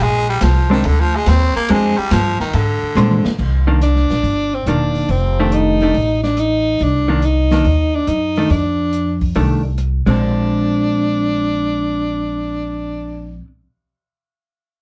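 A raspy, growling baritone saxophone takes a short solo over woody pizzicato upright bass, a dark, clean hollow-body electric guitar and an acoustic drum kit with a boomy kick and dark cymbals, then after a drum fill at 3.0 seconds a clear tenor saxophone with light vibrato and scooped notes carries the melody from 3.8 seconds in this playful, swinging small-group jazz at 141 BPM, heard from further back in a wet club reverb.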